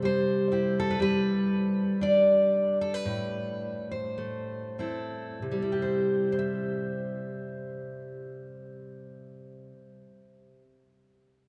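Peaceful and hopeful, this short folk passage, cut from a longer piece, features a single fingerpicked steel-string acoustic guitar playing alone in a free, rubato 4/4. The guitar is warm, full-bodied and up front, with the depth of a jumbo body, covering a span from A2 to E5. The pace slows from 1.0 to 5.4 seconds as the harmony moves from C to G and then to A minor add9, before settling back on C at 5.4 seconds for a second section. A long, wet cathedral reverb surrounds the instrument, giving the sense of a church or concert hall. The top end is gently rolled off, lending the recording a soft, mellow sheen.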